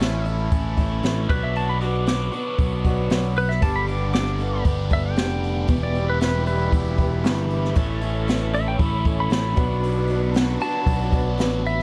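A dark, warm production with light reverb frames this short folk rock and heartland rock fragment in a steady, straight four, and its mood is reflective and wistful. A clean, compressed pedal steel guitar carries the melody as a solo throughout, played with fingerpicks and slide, with volume swells. Beneath it, a bright, boxy acoustic archtop guitar picks the accompaniment while a double-tracked, overdriven electric guitar plays a riff colored by phaser. A growly, up-front electric bass holds the low end, and a jazz kit played with brushes adds an airy, polished feel, with a high-tuned snare, boomy kick and hi-hat. At 5.7 seconds a distant, woody string section enters very quietly with lush bowed chords and vibrato, over a progression that moves from A and Bm through Gadd9 and Em before returning to A and Bm.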